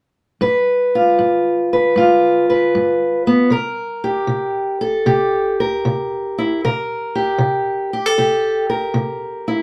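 Set in a wet small room with a dark, warm production, this short slice of a longer blues piece swings at 77 BPM with a swaggering, soulful feel, as a boxy, parlour-toned fingerpicked steel-string acoustic guitar sits up front from 0.4 to 9.6 seconds, moving from G7 to C7(no3) at 3.5 seconds.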